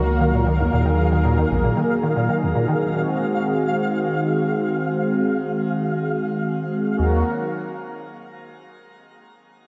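Melancholic and eerie, this dreamy IDM excerpt drifts in a reverb-soaked space, where a bright, detuned sawtooth analog pad holds sustained chords through a filter sweep, dressed in chorus and shimmer reverb. A round sine sub bass sits up front at the start and returns briefly at 7.0 seconds, while a rubbery, resonant square-wave acid bass plays saturated arpeggios with delay and lush chorus until 2.7 seconds. High above, a grainy, flickering granular texture hangs faint and mellow across the opening section, blurring into the long plate tail.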